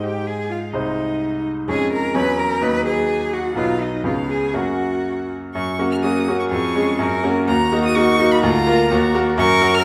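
From the first moment a rich, vibrato-laden bowed violin sings the melody above a clear, focused cello line and a brilliant grand piano accompaniment placed up front, together forming a lively, graceful classical-period piano trio movement in F# major at a quick 126 BPM in 2/4 with a rubato feel, cut from a longer piece and bathed in the generous reverb of a recital hall, shifting to a new section at 5.6 seconds that settles back onto F# by 9.4 seconds.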